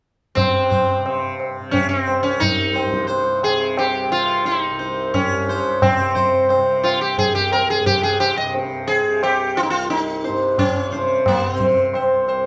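Meditative and solemn, this short passage of Hindustani classical music moves at 88 BPM in 4/4, set in raga Bhairavi on C. An up-front sitar carries the melody with a round, buzzing tone and ringing sympathetic strings, while a softly plucked tanpura holds a warm, shimmering low drone beneath it from 0.4 to 12.5 seconds. Low-tuned tabla with a short ring sounds distant, as if in a large room, and the close, detailed recording carries light reverb.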